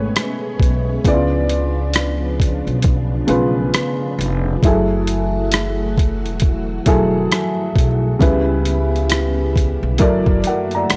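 A compressed, pitched-down boom bap drum kit sits up front, entering at 0.2 s with a thumpy kick, hi-hat and rim click carrying gritty 12-bit sampler character. This dreamy, mellow lo-fi hip hop cut, taken from a longer piece, moves at a relaxed 67 BPM in 4/4 with a loose 16th-note swing, tuned slightly sharp at A4 = 444 Hz. A dark upright piano, also up front, plays intimate accompaniment through a cassette-tape coloring, its worn, slightly detuned tone carrying audible action noise. Beneath it, a pizzicato upright bass gives a woody, gut-string pulse with transformer saturation, while a soft-attack, organ-like ensemble string pad holds evolving chords, thickened by ensemble chorus. The harmony drifts through rich jazz colors, from Amaj9 and C#7b9 to F#m9, C#m7b5 and an altered F#7. The whole mix has a dry, gritty hardware feel with a touch of digital ambience.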